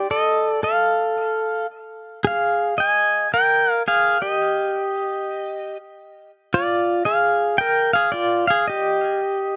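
Swung eighths in a relaxed four give this sunny, languid Hawaiian excerpt its easy sway, as a lone electric pedal steel guitar, up front, clean and compressed with a digital delay and light reverb, glides through slides and volume swells played with fingerpicks over brief Bb7sus4 and Bb7 chords, between F4 and Ab5 across 9.6 seconds.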